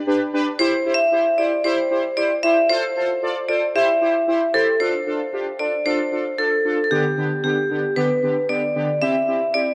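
A straight 4/4 pop pulse carries this bright, wistful excerpt, where a fat, detuned analog synth brass part with chorus and a filter sweep holds down the accompaniment from 0.1 seconds, a ringing, metallic vibraphone played with hard mallets enters with the melody at 0.6 seconds up front, and a moderate concert hall reverb wraps the dark production.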